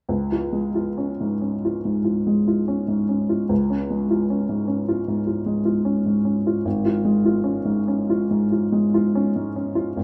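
A clear, woody upright piano plays alone from 0.1 to 10.0 seconds in a lyrical, warm romantic character piece in D-flat major, moving with a free rubato at roughly 67-78 BPM in 4/4. Its slightly detuned, natural tone with short sustain sits up front, captured by close, detailed microphones in a light reverb, reaching from Ab1 to F4. The harmony rests on D-flat before shifting to D-flat over A-flat at 6.7 seconds, in this short excerpt cut from a longer piece.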